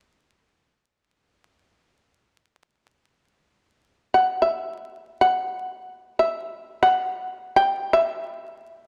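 Still and meditative, this short cut from a longer piece of Japanese chamber music unfolds in free time in E hirajoshi, with a solo shamisen carrying the full 8.9 seconds. The fretless, plectrum-plucked instrument sounds buzzing and percussive yet mellow, ranging from E4 to G5 and placed powerfully up front. A wet recital-hall reverb with a 1.8-second tail surrounds it, while vinyl crackle gives the sound an aged patina.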